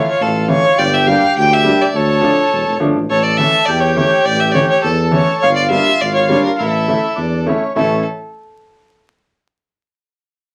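Vinyl crackle and a wet club reverb frame this soulful, festive klezmer excerpt in 2/4, where a single bowed fiddle with light vibrato and a smooth, focused top carries the melody up front, a reedy, rich accordion plays a second line, a clear, woody upright piano with short sustain accompanies, and a mellow, distant tuba joins on bass at 0.2 s.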